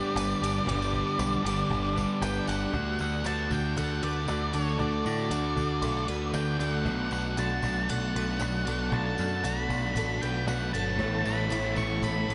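A straight 4/4 pulse carries this blissful, hazy fragment of shoegaze and dream pop, with a soft-handed, woody cajon and a jingly tambourine in the background beneath a growling, overdriven picked bass up front. A dark octave-fuzz lead guitar sings the melody over riffs from a thick fuzz guitar with analog chorus, a compressed, direct-recorded clean electric guitar trailed by reverse reverb, and a double-tracked distorted electric guitar that drops out at 2.7 seconds and returns at 11.0 seconds, while a shimmering twelve-string acoustic picks arpeggios through chorus and diffuse ambient delay. The mix is soaked in a huge, dreamy reverb with its top end rolled off, moving from G through D and Bm7 to Aadd9.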